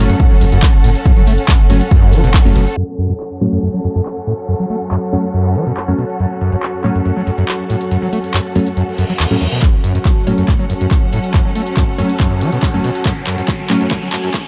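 A screaming, squelchy acid line in sawtooth distortion opens this hypnotic, intense peak-time techno excerpt at 140 BPM in F# minor, joined at once by crisp, detuned wavetable chord stabs, a dark, woody string section bowed in the distance, a thick saturated sub bass that drops out at 2.7 seconds, and a punchy, tape-warm kick up front alongside an overdriven kit of handclaps, hi-hat, ride and tambourine. Very quiet downlifter, reverse cymbal and riser effects enter at 3.4 seconds, and from 3.9 seconds a moody ambient pad drones in the background, while filter sweeps shape the middle and the kick returns at 9.6 seconds for a build-up with a drum fill and a sweep on the acid line. The production is dark and dry, with sidechain pumping on nearly every part and tape echo on the acid line and stabs.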